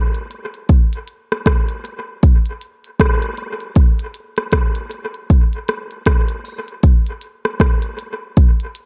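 A dark production with light reverb frames this laid-back, meditative reggae fragment, cut from a longer piece and moving at 78 BPM in 4/4 with a 59% swing on the sixteenths. A glitchy electronic drum kit sits up front from 0.1 to 8.9 seconds, its deep kick, clicky hi-hats and rim clicks carrying a tape-warm character and trailing dub echo.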